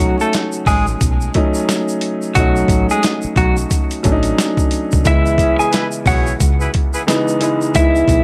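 Compressed, thumpy sampler-style drums drive this tough, gritty boom-bap hip-hop excerpt at 89 BPM in C# minor, moving from B7 to C#m7, with a clean hollow-body electric guitar melody carrying spring reverb and analog delay over intimate concert grand piano with audible action noise, a dark, round fingered bass with tube saturation, a grainy shaker, and a mellow trumpet section adding tight stabs from 5.4 to 7.0 seconds, the whole recording dry with vinyl crackle.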